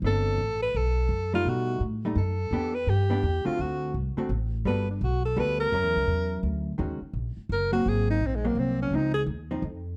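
Swung in a lilting three, this smoky, late-night fragment of small-group swing and bop sets a woody, thumpy pizzicato upright bass and a clear, vibrato-laced alto saxophone up front over dark, clean, compressed hollow-body electric guitar comping, with the saxophone's soft-attacked playing becoming a solo at 6.8 s as the harmony turns to Ebm7, Ab9 and Dbmaj9 inside a warm production touched by light reverb.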